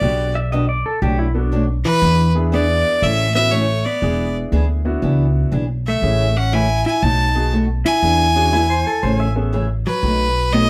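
Down-home and cheerful, this short western swing excerpt from a longer country piece rolls along in a swung four. A clear, intense fiddle carries the melody up front with light vibrato. Beside it, an up-front upright bass gives a woody, thumpy pizzicato bottom on steel strings. A dark, clean hollow-body electric jazz guitar plays a second line, while a picked parlour acoustic guitar and a smooth vintage upright piano with long sustain fill in the accompaniment, the piano dropping out shortly before the end. A clean pedal steel guitar, played with fingerpicks and slide, adds brief volume-swelled phrases near the start at 0.4 seconds and again at 8.5 seconds. Light reverb gives the band a homely sound over jazzy seventh and ninth chords.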